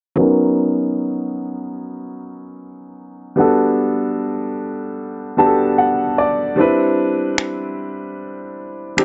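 Contemporary R&B with a tender, dreamy mood, built on a boxy, up-front grand piano that moves through Bmaj9, Gmaj9 and Cmaj9 chords beneath a filter sweep and adds a short fill between 5.0 and 6.6 seconds. Dry, tape-warm electronic finger snaps enter at 7.4 seconds and sit close to the front. The production is dark and warm, with a light reverb, in this brief fragment of a longer piece.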